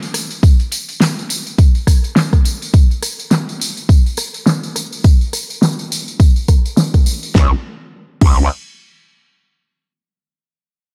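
Funky and swaggering, this glitch hop excerpt struts at 104 BPM in 4/4 with a swung sixteenth-note feel. A pop drum kit opens the piece, with a fat snare, metallic hats, rim click and crash cymbal, alongside a jingly acoustic tambourine placed close. Low-pass filtering shades the hats, snare and cymbals, and a filter sweep runs across the drums until 7.4 seconds. A punchy, tape-warm electronic kick sits up front from 0.4 seconds. At 7.3 seconds the tambourine stops and an aggressive, growling bass arrives around C#2, wobbling and bright through a formant filter, its sound compressed and saturated with chorus and tube saturation. Light reverb and digital ambience surround a dry, gritty hardware sound.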